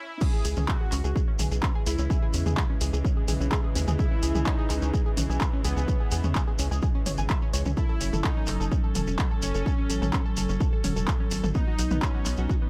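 A heavy, layered electronic kick sits up front in this cinematic, dramatic melodic techno excerpt, its tape-warm thump anchoring a drop that runs from 0.2 seconds to the end of the passage. Beneath it, a tight sequencer bass built from sawtooth and square waves adds a mellow filter pluck with a fast attack that decays, shaped by sidechain pumping. An analog drum machine supplies crash cymbal, handclaps, hi-hat and toms, with sidechain pumping on its hats, cymbals and toms, while a grainy shekere adds close, dry acoustic texture. A soft supersaw carries the melody from the very start, airy and smooth with detuned unison saws, a noise layer and digital delay, and a nasal sequenced synth spins arpeggios through chorus, a moving notch and digital delay. A dark studio string section holds bowed, floating chords with a soft attack over a progression from C#m to F#m at 7.8 seconds and B at 11.6 seconds, all in a dry, high-passed mix with little reverb.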